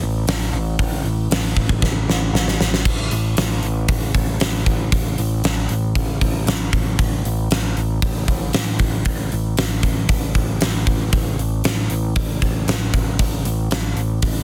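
Heavy and aggressive, this hard rock excerpt drives along at 116 BPM in a straight 4/4, built from a growling picked electric bass, overdriven and up front, and a gated 80s drum kit with a punchy kick, fat snare and bright cymbals set in a bright stone room. The bass opens at 0.0 s with the drums joining at 0.3 s, and a drum fill from 1.8 to 2.9 s carries the music into its next section, with soft clipping giving the kick and snare extra bite throughout. The sound is dry, dense and heavily limited, with a polished, modern finish.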